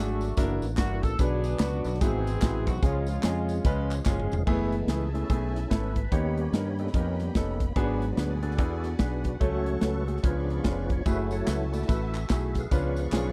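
A swung 4/4 groove at 146 BPM drives this uptempo gospel excerpt, solemn yet soulful in mood, with a polished acoustic drum kit up front, its tight kick and medium-tuned snare sitting beside a round, direct fingered electric bass. A horn section with a smooth top and light vibrato carries the opening melody until 4.3 s, over an intimate grand piano whose action noise is audible, while a tube shaker and group handclaps add small-room percussion. The percussive tonewheel organ sits in the background, fat and lightly overdriven with key click, chorus vibrato and a slow rotary speaker. An organ fill and a drum fill lead into an organ solo at 4.5 s, where the harmony moves into F# minor. There a lush, bowed string section enters in the background with portamento and expressive vibrato over chords such as F#m11, G#m7b5 and C#7b9, and the shaker and handclaps return at 11.1 s, all captured in a dry, close 1970s-style studio sound.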